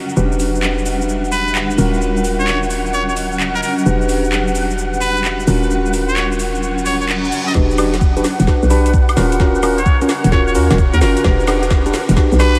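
A swung, skippy two-step garage groove in 4/4 carries this soulful, dreamy UK garage excerpt, where a barky tine electric piano stabs over silky string-machine chords and a cloudy granular pad, a hollow, bouncy FM bass and an overdriven garage kit with a woody snare and metallic hats drive the pumping mix, a nasal, raspy muted trumpet takes the solo melody from 1.3 s, and a reverse cymbal leads to an overdriven knocking kick at 7.6 s as a build-up and drum fill unfold beneath huge ambient reverb and vinyl crackle.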